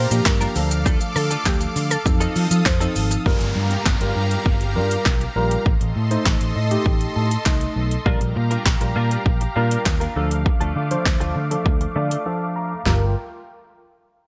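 A driving, confident dance-pop excerpt opens on a drop in which a woody mallet-like synth pluck melody sits in the background, a picked, chorused clean electric guitar plays a riff, a lush, detuned supersaw pad and a dark, round muted bass pulse with sidechain pumping, and punchy, overdriven pop drums with handclaps and shaker sit up front; the pluck and guitar stop at 3.1 seconds as a background downlifter and a filter sweep carry a worn, slightly out-of-tune tine electric piano through its fills, until the guitar returns at 8.1 seconds and a brief break leads into a new section at 12.9 seconds.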